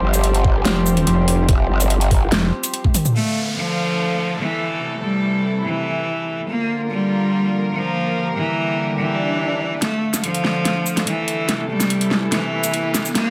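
Heavy wobble dubstep in D minor at 144 BPM with a half-time feel, chaotic and menacing, opens on a drop where an aggressive, saturated growl bass and a pulsing pluck wobble bass ride a knocking electronic kick and a dubstep kit with a huge snare and metallic hats, over sustained, sidechain-pumped chords from a gut-toned, reedy studio string section; at 3.2 s a bright, intense solo cello takes the melody with light vibrato and tape echo amid electronic downlifters, swells and risers, and the kit returns at 9.8 s with a fill driving the build-up over Dm and Am.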